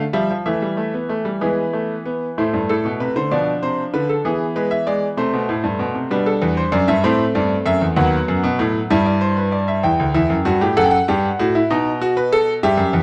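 In a straight 6/8, this solemn yet driving baroque-style fugue unfolds in four voices on a solo concert grand piano, heard here as a 13-second cut from a longer piece. The piano sits up front with a brilliant, natural tone and deep bass, its lines spanning D2 to G5. Its harmony moves from a suspended opening chord through a minor-key progression rich in half-diminished and dominant seventh chords. The music settles into its home key at 9.8 s and closes the passage on a B7 at 11.7 s. A moderate stone-room reverb surrounds the instrument, and the overall production leans dark.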